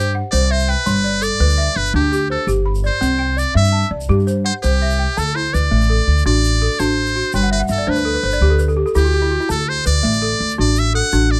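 A flowing, straight 12/8 pulse at 111 BPM in dotted quarters drives this hypnotic West African string and xylophone piece in G major, a dry, close 1970s-style studio recording cut from a longer performance. A brilliant, buzzy muted trumpet with light vibrato and scooped notes plays a forceful jazz-style solo up front for the first 5.2 seconds, while a woody balafon struck with rubber mallets spins buzzing arpeggios and adds a fill from 7.3 to 9.5 seconds. Beneath them, a growly, thumpy pizzicato upright bass with steel strings sits up front, and a grainy tube shaker stays in the background.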